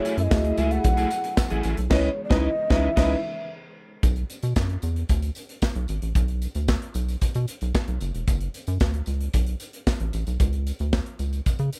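A straight 4/4 groove at 113 BPM drives this slick, funky stretch of early-eighties boogie funk. An up-front acoustic kit in a small, pumping room supplies the beat with a tight kick, medium-tuned snare, handclaps, hi-hat and bright crash cymbals, while a jingly tambourine sits close in the background. Underneath, a rubbery, hollow square-wave bass with a resonant filter pluck bounces low and dark. Over F#m9 and C#m9 chords, a breathy bamboo shakuhachi carries the melody with chiff and slapback echo. A worn, slightly out-of-tune tine electric piano and a lush bowed string section fill out the harmony, a picked guitar at the edge of break-up plays a riff through ensemble chorus, and the band hits an accent from 1.9 seconds. By 4.0 seconds those melodic parts have dropped away, leaving drums, tambourine and bass to ride a Bm to F#m progression in a dry mix until the chords cut out at 10.4 seconds.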